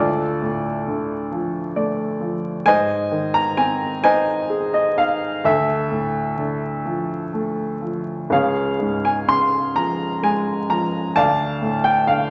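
Classical solo piano in a lyrical vein, this brief excerpt cut from a longer piece carries a wistful, dark mood at a slow 42 beats per minute in 6/8, the beats stretched unevenly with rubato. A single upright piano, woody and open in tone and placed up front, plays alone from 0.0 to 12.3 seconds, ranging from Db2 up to C6. Early on, between 1.3 and 2.7 seconds, the piano adds a short fill before the harmony moves from D minor to A-flat, then returns to D minor, shifts to D-flat, and settles back on D minor at 11.2 seconds. The instrument sits in a reverberant recital hall with a 1.4-second decay. Vinyl crackle hovers over the recording, and the sound has a dulled top end, giving it an aged, intimate character.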